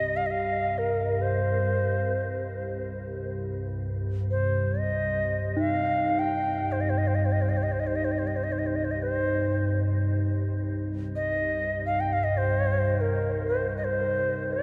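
In free time and unmetered, this short excerpt of world meditation music unfolds in C minor pentatonic with a meditative, haunting mood. A Native American-style cedar flute carries the melody between Bb4 and G5. Its airy wooden tone sits up front, with a crisp, chiffy attack and expressive vibrato, and a tape echo trails its phrases. Beneath it, a glassy FM pad holds a low, ethereal drone from C2 to G2, slow to bloom and long to fade, thickened by ensemble chorus and its own reverb. A close-miked bronze singing bowl, struck with a wooden striker, adds a bright metallic ring with slow beating around Eb4 to G4 before falling away at 13.4 s, while the flute and pad continue to 14.6 s. A huge ambient reverb envelops the piece and gives the production a dark, warm depth.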